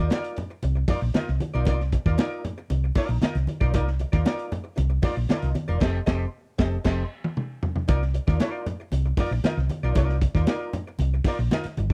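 A dry, close recording with a small-room ambience and a 1970s studio character frames this short funk excerpt in C dorian, moving at a sly, driving 116 BPM in straight 4/4. The crunchy breakbeat kit sits up front, saturated and gritty with dark cymbals, a medium-tuned snare and a tight kick, playing crash, hi-hat, snare and toms under a rolled-off top. Beside it, the hollow-body short-scale bass is fingered and amped, giving a round, up-front low end that ranges from E1 to Eb2. A clean, picked archtop guitar, miked and amplified, plays accompaniment through a wah between C4 and Eb5, sitting lower in the mix. Bright, low-tuned congas struck with hard hands add percussion in the background. The harmony rests on Cm11, shifts to F9 at 5.8 seconds for a band accent crowned by a drum fill, then returns to Cm11 at 7.9 seconds as the groove starts over.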